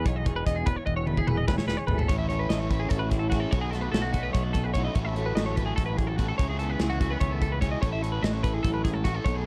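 A slightly broken-up, chorused electric guitar through a small old amp opens this intricate, playful math rock and midwest emo excerpt in 7/8 together with clean, twangy twelve-string arpeggios and a growling, overdriven fingered bass, while a tight modern studio kit plays a fill from 0.9 to 2.1 seconds. At 2.1 seconds a biting, double-tracked overdriven guitar adds a riff as the harmony moves through rich chords such as A69, B9 and C#m11. The sound is dark and dry, cut from a longer piece.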